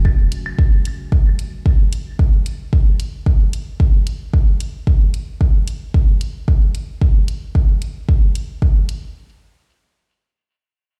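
A deep, dark sawtooth pad opens this cavernous, nocturnal dub techno excerpt, sustaining a full-bodied, detuned unison chord with chorus, built-in reverb, sidechain pumping and a filter sweep until 4.8 seconds. A layered, up-front electronic kick drives the swung groove, while brief analog claves with dub echo flicker at the start and a soft electronic hi-hat runs from 0.3 seconds, the kick, hi-hat and claves all re-recorded in a small room. The whole mix sounds as if played on a big sound system in a bare stone room.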